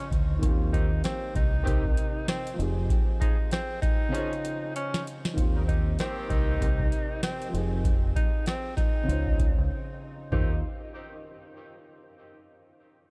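A swung 97 BPM boom-bap hip-hop groove in Eb mixolydian, cut from a longer piece, rides on a booming analog drum machine with deep kick, crisp snare and metallic hats up front, a round, punchy dub bass, and a dark, mellow baby grand piano with a cassette-tape tint, while a breathy tenor saxophone carries a jazzy melody with scooped notes and tape echo over warm horn-section stabs in the background from 0.7 seconds, with a drum fill at 4.1 seconds and a break at 9.7 seconds giving the confident, warm mood its shape.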